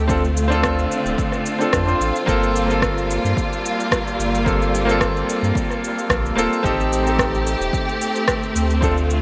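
A clear, intimate concert grand piano with audible action noise and a touch of delay carries the accompaniment in this wistful, relaxed sunset chillout passage, cut from a longer piece, sitting up front over lush, bowed symphonic strings with vibrato and portamento holding sustained chords. A round sine sub bass supplies deep, fast-attack low end, while a punchy electronic kick and a layered electronic shaker and rim click, both re-recorded in a small room, keep a straight 4/4 pulse. The harmony moves from Dm7 to Gm11 at 2.3 seconds and Am7b5 at 6.6 seconds, framed by a moderate hall reverb and bright 1980s-style digital production.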